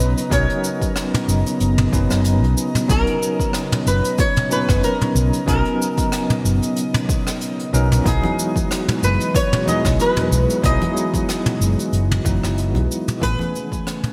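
Sunny and smooth, this sunset chillout excerpt in B major moves at 93 BPM with a lightly swung 16th-note feel, drifting from Bmaj9 to Emaj9 and Amaj9. An acoustic, fingerpicked flamenco guitar carries the melody through lush chorus and delay, over a bell-like tine electric piano with delay, a breathy, detuned pad in the background, and a round, dark fingered electric bass. Airy brushes on a jazz kit with cabasa, hi-hat, rim click and toms, treated with gated reverb, meet a punchy, overdriven electronic kick from 0.3 s; congas join at 8.2 s, and the bright 1980s-style digital mix, bathed in hall reverb, fades out from 11.5 s.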